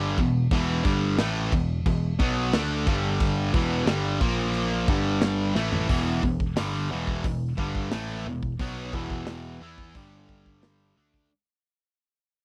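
An overdriven, double-tracked electric guitar riff and a growly picked bass open this aggressive, relentless heavy metal excerpt at 89 BPM in E minor, with an acoustic drum kit joining at 0.2 seconds, its punchy kick and medium-tuned snare set mid-forward with a rolled-off top. The bright guitar sits up front as the riff moves from Em through G5, A#5 and A5 power chords, and a drum fill at 5.6 seconds leads into a second section that fades out from 5.9 seconds. The sound is dry and close, in the manner of a 1970s studio recording.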